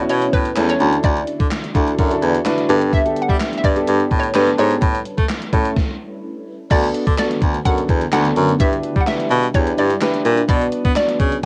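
A carefree, summery dance-pop excerpt at 127 BPM in D major, where a hollow, bouncy square-wave pluck carries the melody with chorus and tape echo over smooth vintage grand piano chords and a shimmering, ethereal pad sitting in the background with phaser and long release, both pumping with sidechain compression. Up front, a bright, punchy baritone saxophone with vibrato plays the bass line while a gated 80s digital drum machine supplies thumpy kick, gated-reverb snare, handclaps, hi-hat and crash. After a stop from 5.8 to 6.7 seconds, the chords move from Aadd9, Dadd9, Gadd9 and A to D6, G6 and Bmadd9, all with the sheen of a home cassette recording.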